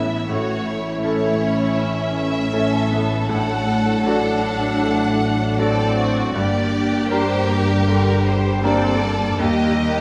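Lush, vibrato-rich violins carry a longing melody above a second, expressive violin line in this bittersweet, rubato cinematic orchestral cue at 79 BPM, with a bright, brilliant concert grand piano, smooth-topped violas, mellow French horns holding soft-attack chords, and even cellos and double basses beneath, the passage bathed in a wet scoring-stage reverb.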